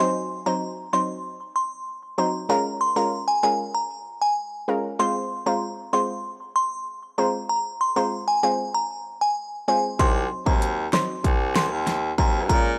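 A glassy synth bell carries the melody from the start, its crystalline, warbling FM tone sounding vintage and chiming with chorus and tremolo in a high register. Beneath it an analog pluck supplies accompaniment from 0.0 s, round and detuned with a sawtooth edge, a noise layer and a moving notch filter, pumping against a sidechain. This tough, bouncy dancehall cut moves at 96 BPM in a straight 4/4, drifting through diminished and minor chords. At 10.0 s a bright, forceful baritone saxophone takes the bass line with vibrato and scooped notes, sounding distant and roomy despite sitting up front. The pop drum kit arrives at the same moment, electronic and layered, with a punchy kick, fat snare, metallic hats and a tape-warm small-room character. The whole fragment has a dry, gritty hardware sound with digital ambience, cut from a longer piece.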